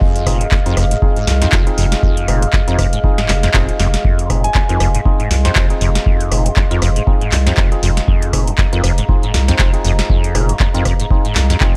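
A squelchy, resonant acid bass riff with tube saturation and sidechain pumping drives this raw, gritty acid house excerpt, set over a deep electronic kick, a booming analog drum machine with crisp snare, metallic hi-hats, handclaps and rim clicks, a drum fill at 3.8 s, a round analog bass with transformer saturation, a moody, detuned analog pad holding Fm7, hollow organ stabs trailing analog delay, and a soft FM bell note at 4.4 s, all in a dry, hardware-grit mix.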